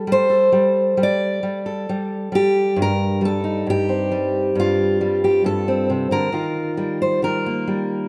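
Hopeful and gentle, this brief folk passage cut from a longer piece features a lone fingerpicked steel-string dreadnought guitar, bright and up front, drifting with a loose rubato feel through Gsus2, Cm/G and Ebadd9 chords in a light reverb and small room ambience that carries the rough charm of a home demo.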